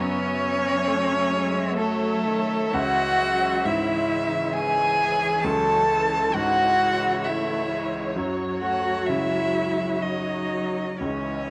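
Longing and melancholic, this short excerpt from a neoclassical piece for piano and strings drifts in a rubato 3/4 at 66 BPM, tuned to A4 = 441 Hz, as a close, focused solo violin sings the melody up front above a rich, expressive cello second line with portamento, while a clear, open concert grand piano with deep bass, a smooth viola in the background and a chamber string section holding sustained chords fill out the harmony from F#m7 to C#m and an F#5 at 8.2 seconds, all bathed in a wet spring reverb.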